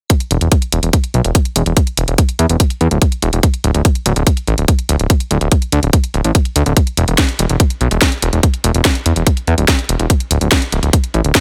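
Hypnotic and intense, this psychedelic trance excerpt drives along at 144 BPM in a straight 4/4, pairing a tight, overdriven electronic kick and a garage drum kit with a cracking, overdriven snare and hi-hat against a fat, detuned sawtooth analog bass that plucks and sustains with saturated, evolving grit from D1 to E2, all of it up front in a dry mix.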